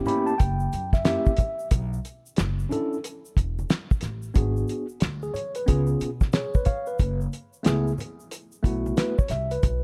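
Nocturnal and smoky, this jazz-hop cut from a longer hip hop piece moves at 91 BPM in F# minor with a swung 16th-note feel, as a clean tine electric piano sounding through its built-in speakers plays fills at the very start and again from 6.0 seconds over chords like F#7b9, Bm11, G#m7b5, C#7 and F#m11. Up front, a cloth-damped, thuddy drum kit pairs a fat snare and tight kick with a rolled-off top, while a woody, thumpy pizzicato upright bass on gut strings enters at 0.4 seconds. Bright congas and egg shaker played with soft hands sit in the background, and light studio reverb wraps the dark, warm production.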